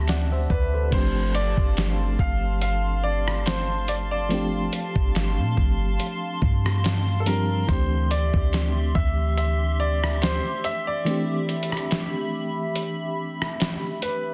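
Contemporary R&B at a slow 71 BPM in 4/4, this short cut from a longer piece carries a sensual, late-night mood with a light swing on the sixteenths. A gritty, sampler-style drum kit sits up front with a thumpy kick, fat snare, rim click, hi-hat and crash, while a deep, boomy 808-style bass with a sine tone anchors the low end until it drops out at 10.4 seconds, leading into a break from 11.1 seconds. An FM electric piano with tremolo supplies the accompaniment, and a hollow, flute-like pad treated with chorus holds sustained chords high above it. From 0.5 seconds a clear, intimate baby grand carries the melody, its action noise audible and its notes trailed by tape echo. The harmony moves between D9sus4 and G9sus4, and the dense, heavily limited master keeps the sound dry and close.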